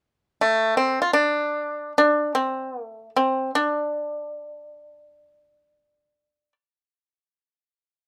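A solo pipa enters at 0.4 s and plays in free time until 6.5 s, its dry, percussive fingerpicked tone sitting up front in a moderate studio reverb as it moves between A3 and F4, giving this short cut from a longer Chinese traditional piece, tuned to A4 = 444 Hz, an elegant and longing mood.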